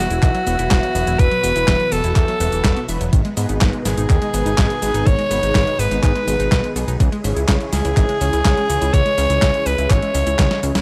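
A raspy, close-miked alto saxophone carries the melody up front with analog delay in this bittersweet, melodramatic italo disco excerpt at 124 BPM, moving over chords of Esus2, G#m and C#m. A fat, detuned sawtooth bass and a thumpy electronic kick drive the straight 4/4 groove alongside a clean 12-bit drum machine playing cabasa, handclaps, hi-hat and a medium-tuned snare, with a drum fill at 10.5 seconds. In the background, a swirling phased string machine sustains chords, a bright, chorused analog pluck runs arpeggios through cassette tape and delay, and dark, mellow synth brass adds vibrato-tinged stabs, all within a dry, gritty hardware recording.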